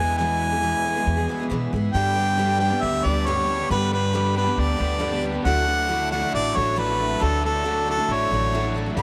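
A clear harmonica carries the melody up front, singing with a light vibrato in a pop style over this nostalgic, warm-hearted slice of folk rock and heartland rock, cut from a longer piece and moving at 137 BPM in a straight 4/4. Beneath it, a bright, full-bodied dreadnought acoustic guitar is picked as accompaniment, while a double-tracked, overdriven semi-hollow electric guitar plays a riff with a hollow-body bite. A pizzicato upright bass sits up front with a woody, thumpy tone, and a soft, flute-like tonewheel organ holds very quiet sustained chords through a slow rotary speaker, its key click just audible. The harmony moves from E to G at 1.9 seconds, then to Dadd9 at 5.5 seconds. All five parts play throughout, set in a small room with light reverb and a faint mains hum underneath.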